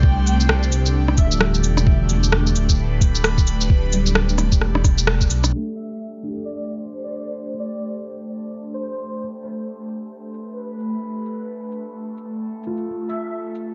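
Rainy and ghostly, this future garage excerpt at 131 BPM in A minor swings its 16ths over a felt-muted upright piano with audible action noise, a breathy pad that runs throughout, and a deep, rumbling detuned saw bass and soft tape-warm kick that drop out near 5.5 seconds, leaving the layered cabasa, shaker and rim click, the filter-swept piano and a dreamy vibrato lead drifting over Am7.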